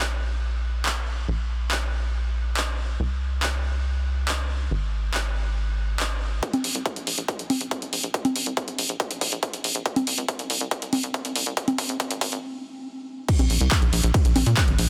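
Uplifting trance at 140 BPM with an emotional, euphoric mood, this cut opens on a tight, plucky sawtooth sequencer bass with sidechain pumping and an overdriven analog drum machine of congas, handclaps, hi-hats, ride and crash in a large room, before a layered, tape-warm electronic kick joins at 6.4 seconds for a build-up with a drum fill, a stop at 12.4 seconds and a drop at 13.3 seconds, all in a dense, heavily limited modern master with light reverb.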